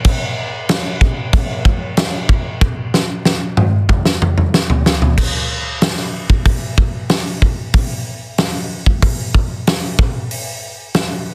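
A big acoustic rock drum kit opens at once at a straight 94 BPM in 4/4, its punchy kick, fat snare, hi-hat, bright crash cymbals and toms sitting up front in a natural studio room with little reverb. A fill runs from 2.6 to 5.2 seconds before the groove shifts into a new section, keeping the mood driving and menacing. The dense, heavily limited modern master gives this short cut from a longer piece a hard, compact punch.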